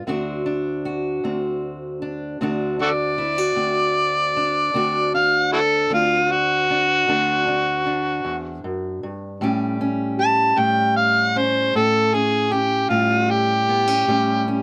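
A slow, laid-back 12/8 lilt at 51 BPM carries this short acoustic country blues fragment in D mixolydian, opened by a dark, boxy fingerpicked parlour guitar on D7 that moves to A7 at 9.4 seconds. At 2.8 seconds an amplified, overdriven harmonica takes the lead up front, its gritty, jazz-tinged solo full of scooped notes, tongue slaps and light vibrato. Close, detailed microphones and light reverb keep both instruments intimate and present.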